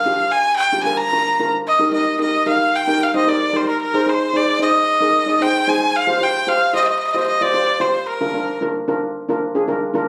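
A nasal, earthy erhu carries the melody up front in this carefree, bouncy calypso excerpt in Eb major at 112 BPM, bowed by one player with light vibrato and portamento, and it takes a solo over the opening 1.7 seconds. A shimmering, mellow steel pan played as double seconds with soft rubber sticks provides the accompaniment from 0.1 seconds and carries on after the erhu stops at 8.6 seconds, over chords moving from Bb through Eb, Ab and Fsus2 back to Bb. The erhu sits close, and the recording was captured on a phone in the room with club reverb.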